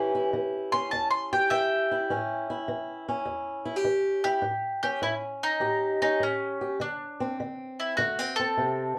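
A boxy, fresh-stringed fingerpicked acoustic guitar opens this gritty, swaggering slice of acoustic country blues at a swinging 102 BPM in A mixolydian, and at 0.7 seconds a warm, double-strung bowl-back mandolin enters up front with a picked solo that runs to 4.4 seconds, over an A7 that moves to D5 at 6.8 seconds, all set in a wet studio reverb heard from further back in the room.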